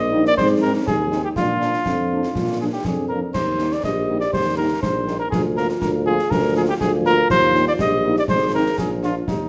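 Military-style wind band march in Eb major at 121 BPM in a straight 2/4, festive and spirited, with a mellow cornet up front carrying the melody, a smooth-topped euphonium with vibrato singing a second line in the background, a distant, roomy tuba anchoring the bass, a close-miked French horn section adding background accompaniment, and concert snare, bass drum and dark clash cymbals from 0.3 s, all set in a large studio reverb with a faint mains hum in this short cut from a longer piece.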